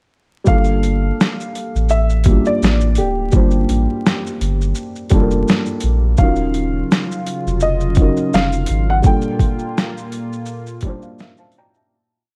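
A felt-muted upright piano opens at 0.4 s with soft, cassette-tinged pushed chords, grace notes and short fills, repeated like a sampled loop, setting a nostalgic, reflective lo-fi hip hop groove at 84 BPM with a gentle swing. A woody upright piano with audible action noise carries a motif-based melody over a round sine sub bass with slides and a gritty, overdriven boom bap kit of thumpy kick, snare, hi-hat and shaker sixteenths, moving from Gm9 to Ebm9 at 6.2 s, where a lush, detuned unison pad with chorus slowly enters. Vinyl crackle and light reverb surround the music, and from 9.0 s the piece breaks down and fades out on Gm9, with the felt piano playing a closing fill from 10.5 s.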